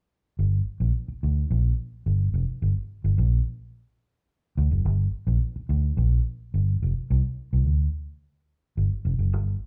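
Funk in a hypnotic groove, this short excerpt cut from a longer piece features a lone vintage fingered electric bass playing by itself from 0.4 to 9.5 seconds. The bass is foam-muted and amped, giving it a dark, round tone that sits up front in the mix. It stays low in its register, moving between F1 and D2 in a minor key, which keeps the feel hypnotic and funky. The sound carries the air of a band playing live in one room, with a moderate large-studio reverb adding a sense of space around the instrument. The whole passage falls within a single section, giving the listener an intimate, close-up view of the bass line.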